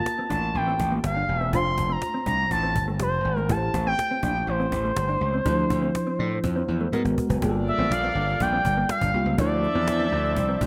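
An up-front, expressive portamento lead with a smooth, sustained sawtooth tone, vibrato and chorus carries the melody through this slick, bittersweet piece of polished 1980s jazz-funk pop at 122 BPM, over a gritty, overdriven slap bass, a worn, slightly out-of-tune tine electric piano drenched in lush chorus, a dark, fingered electric guitar riff in the background, and a snappy, dry cajon whose fill at 6.9 seconds ushers in a clear pop-style horn section at 7.4 seconds, all set in a lush hall reverb with bright digital sheen over chords moving from Gm9 through F6, Am7 and Dm9.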